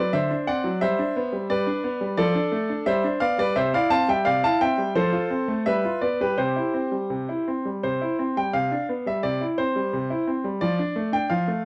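A dark, warm production with light reverb frames a solo concert grand piano that sits up front, its tone clear and a little vintage, with a deep bass. The music is a playful, cheerful classical-period sonatina in C major, moving at 86 BPM in 2/4 with a rubato feel. The piano covers the range from C3 to A5, opening on a D7 that resolves to G before the harmony moves through Dm/F, C, F and G7 back to C. A new section begins at 7.8 s, leaning on G7/C before returning to C and closing on Dm/F at 10.6 s. The passage is a short portion cut from a longer piece, ending at 11.7 s.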